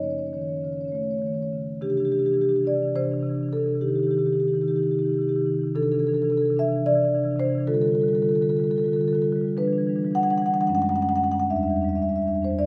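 A solo marimba played with soft mallets sits up front with a mellow, round tone, spanning from E2 up to F#5 in this playful, warm contemporary classical fragment cut from a longer piece. It moves in an uneven 7/8 at 217 eighth-note beats per minute with a rubato feel in C lydian, opening briefly on F#m6 before settling into a new passage at 1.8 s that drifts through Cadd9, Cm, C69, Dmadd11 and Em7. A recital hall's reverb, lasting about 1.5 seconds, gives the instrument a lingering, resonant halo.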